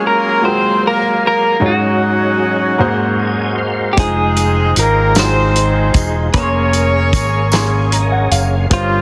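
An echo chamber's moderate reverb gives this dense, heavily limited modern master a roomy glow, framing a short cut from a slow, uplifting and reverent gospel piece in a straight 6/8. From the opening, a clean, compressed electric guitar with tremolo and a clear, pop-style horn section in octave doubling carry the melody together, while a natural-sounding baby grand piano with short sustain accompanies and a thick, lightly overdriven tonewheel organ holds chords in the background through a fast rotary speaker, chorus vibrato and audible key click. The harmony drifts through lush extended chords, from Gbmaj9 and Ab7sus4 to Ab9, with the organ adding a fill before the rhythm section arrives. At 4.0 seconds a round, punchy fingered electric bass and a dry, mid-forward soul drum kit with a tight kick, medium-tuned snare and hi-hat step up front as the chords settle onto Fm7 and Bbm9/F. A jingly tambourine joins softly at 4.4 seconds, and at 7.5 seconds organ and piano fills together decorate the close of the passage.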